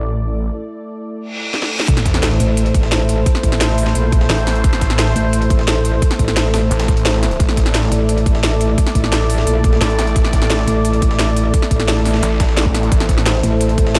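This dark, futuristic drum and bass cut moves at 174 BPM in a straight 4/4, in A minor, with a tight electronic kick, a cracking snare and crisp hats driving the drop that lands at 1.9 seconds, while a gritty, compressed breakbeat sampler-style kit with a high-tuned snare and filtered hats sits in the background. Before that, a short opening pairs a sweeping, resonant pad holding bright, warbling sustained chords with a snarling, distorted saw bass on A1. That bass growls up front with detuned unison saws, tube saturation and sidechain pumping. From 2.4 seconds a metallic FM wobble bass joins it up front between A1 and Bb1, saturated and chorused, with a surprisingly mellow edge beneath its aggression. Very quiet electronic effects, a reverse cymbal, sub drop, zap and noise sweep, mark the lead-in to the drop and return near 10.0 seconds. The pad carries vintage 12-bit sampler grit and its own pumping, the kick and main kit have a tape-warm finish, and a light reverb surrounds the mix in this excerpt from a longer piece.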